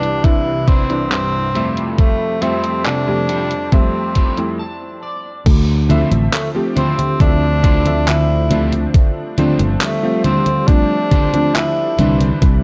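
Woozy and nostalgic, this vaporwave excerpt drifts at an unhurried pace, cut from a longer piece. A clear tenor saxophone carries the melody with light vibrato and a smooth top, played in a classical style over an electric grand piano with a clangy low end, chorused unisons and a gritty vintage sampler edge. Behind them a dark, warbling pad holds sustained chords with a slow attack, while a slightly broken-up, scooped electric guitar picks a chorused, delayed riff in the background. An overdriven, thumpy electronic kick sits up front beside a detuned 8-bit drum machine of congas, handclaps, hi-hat and crash, its hats, cymbals and percussion muffled by low-pass filtering. After a clean guitar fill and a brief stop at 4.6 seconds, a bright, growly fretless bass enters at 5.5 seconds as the chords move from Cmaj9 and Fmaj9 to Dm9 and G7sus4, all wrapped in light reverb and a cassette tape character.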